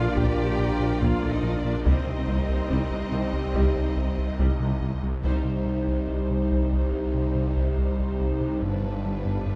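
A brooding, tense cue from a hybrid orchestral and electronic film score opens with a snarling, distorted saw bass growling low beneath a rubbery, bouncy square-wave bass riff, while an evolving, warbling analog drone with chorus holds sustained chords over a dark, quiet French horn section. Bowed strings fill out the texture: a lush violin section carries a focused, vibrato-rich melody, a clear, intense second violin line sits distant in the background, and violas and cellos add smooth, full-bodied accompaniment and bass. A mellow, close-miked solo tuba doubles the low end early on, and a taiko ensemble played with heavy sticks enters in the background at 0.2 seconds. At 5.2 seconds the whole band hits an accent as a very quiet, even double bass section takes over from the tuba, and the taiko drops out at 6.9 seconds. The harmony moves from Bb to C minor before settling on G, all within a moderate scoring-stage reverb in this short cut from a longer piece.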